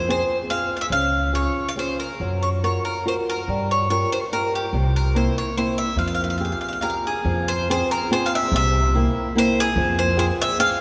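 A bowl-back mandolin opens this brief cut from a longer Italian folk serenade, its bright, picked double strings carrying the melody up front as a flamenco guitar and an upright bass begin alongside it. The feel is rubato in triple metre, and the mood is wistful yet passionate, shaped by a minor progression that moves from Fm through Db and Gbmaj7, leans on Gm7b5 and C7, and settles back on Fm. The flamenco guitar supplies a warm, fingerpicked accompaniment, while the pizzicato bass sits low with a woody, dark, growly and thumpy steel-string tone. A long, wet cathedral reverb surrounds the trio, lending the resonance of a church or concert hall. The opening melodic section returns at 7.3 seconds, and the bass stops at 10.3 seconds, just before the piece is cut at 10.8 seconds.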